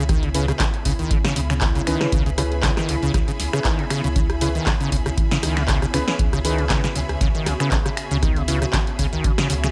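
Driving and gritty, this acid house excerpt rides a swung 4/4 groove on a single C#m7 chord, built around a squelchy, resonant sawtooth acid bass riff with a filter sweep, tube saturation, analog chorus and tape echo, underpinned by a thick, saturated triangle sub bass. An up-front, tape-warm electronic kick enters at 0.1 s alongside a punchy analog drum machine of snare, handclaps, finger snaps, hi-hat and rim click, while a soft, detuned chord stab with chorus and tape echo appears from 0.3 s. Behind them sit a nostalgic, lo-fi warbling pad and a lush bowed string section with vibrato, all pumping against the sidechain in a digital ambience.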